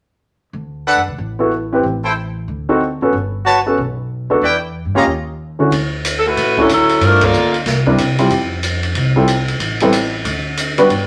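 Big band swing in D major at a brisk 186 BPM, energetic and joyful, opens with a woody, growly pizzicato upright bass and a brilliant trumpet section firing stabs with light vibrato, while an intimate grand piano with audible action noise comps up front. At 5.7 seconds a small-room drum kit with dark cymbals and a boomy kick joins, and a clear saxophone section briefly carries the melody with vibrato through a band accent at 7.2 seconds. Rich chords such as Gmaj9#11 and D#m7b5 colour the harmony, all set in a wet studio reverb in this fragment of a longer piece.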